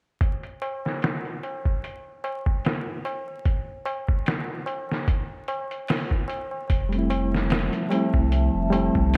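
A cinematic, smoky trip hop excerpt opens with gritty, pitched-down sampler drums, their filtered kick, snare and hats thumping in a gated-reverb room, alongside a low-tuned, ringing tabla. A round sub bass arrives at 6.7 seconds on an Fmaj7, joined by a reedy, slightly out-of-tune electric piano with tremolo and then, at 7.4 seconds, a dark, warbling tape-like pad with chorus and lo-fi sampler grit, all set in a bright 1980s-style digital sheen with vinyl crackle.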